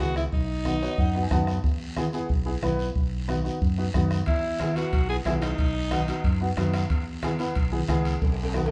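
Joyful and danceable, this short cumbia passage in E major moves at 182 BPM, with a raspy, gritty alto saxophone carrying the melody in brief phrases over a dark, woody upright piano whose action noise is audible and which slips in a fill near the start. A punchy fingered electric bass anchors the E and B chords, while a soft-beater bombo, low-tuned congas sitting in the background and a close, dry guiro drive the cumbia feel, and ringing metal-shell timbales join at 4.3 seconds. The band sounds as if it is playing live together in a large studio with moderate reverb, and a drum fill closes the passage at 8.2 seconds.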